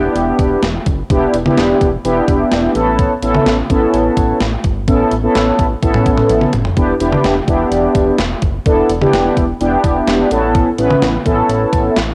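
A mellow, dark synth brass part opens this cool, melancholic synth-pop excerpt, detuned and chorused with vibrato and a filter sweep, alongside a glossy, retro chorused synth bass, as the harmony alternates between Em7 and Aadd9. From 0.2 s a clean 12-bit drum machine sits up front with a thumpy kick, medium-tuned snare, hi-hat and toms, and plays a fill at 6.3 s. The brass and drums carry a tape-softened cassette character, and a moderate spring reverb gives the home recording a modest sense of space.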